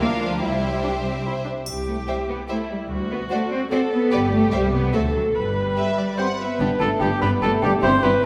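Magical and quirky, this short, whimsical film cue in G major moves at 146 BPM in a lilting 3/4 and is cut from a longer piece. Bowed strings carry it from the start: a rich, expressive violin section sings the melody over a focused second violin line, with smooth, even violas filling the accompaniment and a distant cello section and double bass section, both soft-attacked and vibrato-laden, holding down the bass. A bright, dry triangle tinkles briefly in the background at 1.7 seconds as the harmony winds from Bb/D through C and Am7/C to D7 before settling on G. At 6.2 seconds the color opens up: a sweet, bell-like celesta, slightly out of tune and boxy, joins the melody high above, while a clear, up-front oboe and a very quiet, mellow clarinet share the second line and a tight, dark French horn section sustains chords. A very quiet, dark tuba joins on a low G at 6.6 seconds as the cue shifts into its second section, all of it bathed in the wet bloom of a recital hall.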